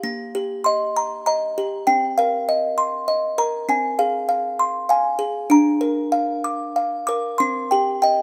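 In a rubato three-time sway, this sleepy, gentle children's lullaby excerpt features a solo music box, delicate, tinkling and slightly out of tune, sitting up front in a moderate plate reverb, and its plucked tones drift through a chord progression that comes to rest on a minor chord at 7.4 seconds before the cut at 8.2 seconds.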